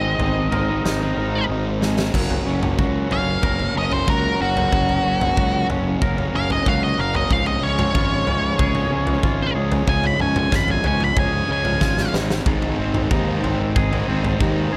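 Lightly reverberant and roomy, this bittersweet, restless quiet-loud alternative rock excerpt at 93 BPM opens in half time over Abadd9 before a drum fill at 1.8 s launches a lead guitar solo: a dark, up-front octave-fuzz lead guitar carries the melody until 12.1 s, a clean, twangy electric guitar with lush chorus picks arpeggios in the background, a hollow-bodied overdriven semi-hollow guitar plays a riff, a growly fuzz fingered electric bass holds the low end, and a huge arena drum kit with a punchy kick and natural big-room crash, snare and toms drives the straight 4/4, while a distorted, thick fuzz guitar riff joins at 12.5 s as the chords move from Gb through Db to Ab.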